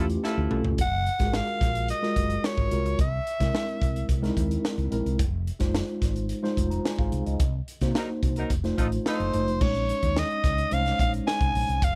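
At a straight 109 BPM in 4/4, this slick, urban slice of polished 1980s jazz-funk pop in Bb minor opens on a band accent with a crisp fusion drum fill over a punchy kick and high-tuned snare, as a woody, round fretless bass and a mellow tine electric piano with subtle chorus carry chords from Db7alt through Gbmaj9 and Fm7 to Bbm11, while a raspy, gritty soprano saxophone takes the close-miked lead from 0.8 seconds and a soft vintage horn section returns for a second accent at 8.0 seconds, all in a dry, small-room sound.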